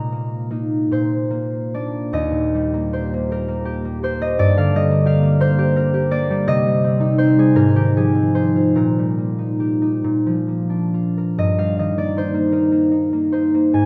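A solo concert harp opens this dreamy, peaceful classical fragment, its thumb-plucked strings ringing warm and up front across a range from Eb2 to Eb6. In a flowing 6/8 with rubato phrasing, between about 42 and 59 beats per minute, the harmony settles in Eb major and drifts through G minor, C minor and F minor seventh before returning home at 11.4 seconds. A moderate recital-hall reverb surrounds the harp, and the passage is cut from a longer piece.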